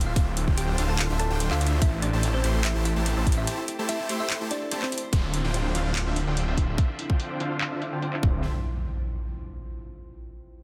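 Future bass in D minor at 145 BPM with a half-time feel, this lush, bittersweet excerpt opens on a drop built from a hard-clipped electronic kick up front, a tape-warm trap kit of handclaps and metallic, filtered hats, a thick, saturated detuned saw bass with chorus, huge airy supersaw chords, a faint ringing concert harp arpeggio, and a round, tine-like thumb-piano-like pluck melody drifting through phaser and delay, with the bass, chords, harp and pluck pumping under sidechain; a break arrives at 3.5 s, and from 5.1 s a filter sweeps the supersaw chords while very quiet, distant bowed chamber strings and a background downlifter and impact join, all in a dense, heavily limited, nearly dry mix.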